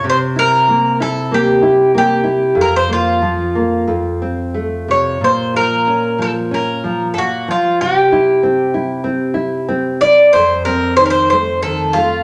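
Fado-style ballad, passionate and mournful, moving in a rubato 4/4 around 94 BPM in a tuning of A4 = 439 Hz, cut from a longer piece. A bright, metallic Irish bouzouki sings the melody up front with picked double strings, while a full-bodied nylon-string guitar fingerpicks a deep classical accompaniment beneath it, both playing throughout the 12.2 seconds. The harmony runs from C7 through Fsus4, F and Bbm to C and F7, all set in a wet, large studio reverb.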